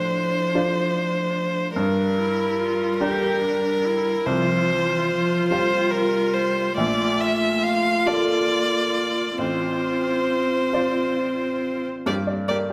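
A rubato lilt in 6/8 carries this fragile, reflective neoclassical piano-and-strings fragment, where an up-front, smooth violin sings the melody over a rich, vibrato-laden cello line, an expressive, distant viola with soft attacks and portamento, and a worn, slightly detuned upright piano with a woody, boxy tone, heard in a reverberant recital hall, before a warbling, lo-fi pluck with chorus and phaser slips in at 12.1 s for brief, mellow arpeggios in the background.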